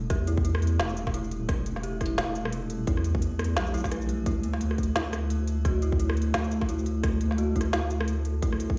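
A deep, wobbling bass built from triangle and sine tones sits up front, saturated and compressed with a touch of chorus, its fast attack settling into sustained notes between E1 and E2. This is a dark, heavy half-time drum and bass cut at 173 BPM in 4/4 with a swung sixteenth feel, moving from E minor to D add nine at 4.3 seconds. A tight, layered electronic kick punches forward from 0.1 seconds, joined by an overdriven kit of woody snare, smooth hi-hats, rim clicks and shaker that sounds re-recorded in a small room. Above them, an eerie, detuned FM bell plays decaying arpeggios coloured by chorus, tremolo, gritty 12-bit sampler character and dub echo. Further back, a metallic, inharmonic drone hangs with a slow attack, long release and its own reverb. The mix sounds as if played through a big sound system in a bare room, with large studio reverb and a dulled top end.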